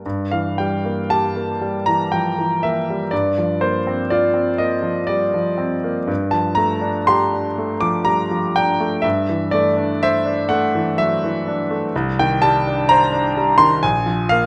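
Impressionist classical solo piano in G minor, mysterious and nocturnal, drifting in a rubato 3/4 at 56-64 BPM, where an intimate, up-front concert grand with deep bass, long sustain and audible action noise spans Bb1 to D6 through shifting harmonies from Gm6 to a closing Bb7 with the third omitted at 13.8 seconds, set in a moderate recital hall reverb across this 14.5-second fragment cut from a longer piece.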